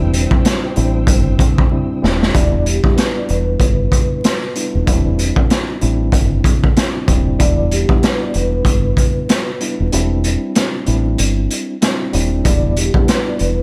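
A light reverb and a layer of vinyl crackle frame this tough, gritty boom-bap hip-hop excerpt in E minor, moving at 95 BPM in 4/4 with a 59% swing on the sixteenths. A raw garage drum kit sits up front, its boomy kick, medium-tuned snare and hi-hat sounding saturated and small-roomed with a rolled-off top, while a deep dub fingered electric bass underneath is dark, round and punchy, foam-muted and recorded both direct and amped. A mellow tine electric piano carries the accompaniment throughout, clean through its built-in speakers yet tinted by cassette tape, and for the opening 2.3 seconds a studio string section adds bowed, expressive chords with vibrato and portamento in the background. A drum fill closes that opening, and from 2.3 seconds a vibraphone with soft mallets takes the melody, metallic and ringing with a fast motor vibrato and a touch of delay, set back in the mix. The harmony rocks between D9sus4/E and Em7, and the kick drops out between 9.9 and 12.4 seconds before the final return to Em7.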